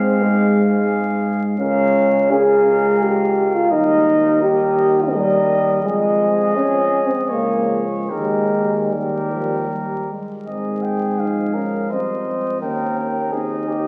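This classical, hymn-like passage for brass band, cut from a longer piece, moves in a lyrical, serene 3/4 at a flexible rubato pace between 72 and 89 BPM, in Ab major and tuned slightly low to A4 = 436 Hz. The cornet sings the melody while the flugelhorn traces a second line just beneath it, the pair sounding mellow, with the cornet heard distant and roomy. A warm euphonium stands up front with a singing vibrato. Under it, a dark trombone with light vibrato and a smooth top stays very quiet, and a distant tuba anchors the bass. The harmony drifts through Fm/Ab, Bbm7/Db and Eb before settling on Ab at 10.5 seconds and turning to Eb7 at 12.6 seconds. A wet church reverb and the crackle of a very old 78 rpm record wrap the whole band in a hazy, aged glow.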